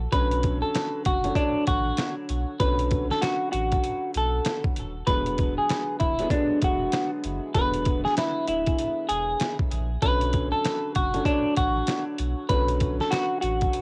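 A semi-hollow electric guitar carries the melody up front, its clean, fingered hollow-body tone filtered and softened by cassette tape and tape echo in a moody, tough boom-bap hip-hop groove at 97 BPM. Beneath it, a trip hop sampler-style drum kit sits close and gritty, pitched down and compressed, with a thumpy kick, a medium-tuned snare and hi-hat swinging on the sixteenths. A warm upright piano fills in the accompaniment with a woody, slightly detuned vintage character, while a deep, round sub bass with a sine-like sustain and tube saturation anchors the low end. The harmony moves from Bm7 to E7 at 5.1 seconds and back to Bm7 at 10.0 seconds, staying in B dorian throughout. Light reverb and the feel of a home cassette recording give this short cut from a longer piece a lo-fi, intimate finish.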